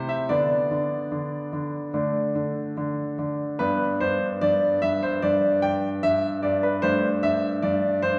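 A clear, open grand piano rings out with long sustain inside a wet recital hall, the listener placed further back in the room while the instrument still sits up front. This short cheerful, playful excerpt from a classical-period sonatina features the piano alone in straight 4/4, moving from Bm/D through D5 to G and closing on D5/G at 6.8 seconds, spanning G2 to G5.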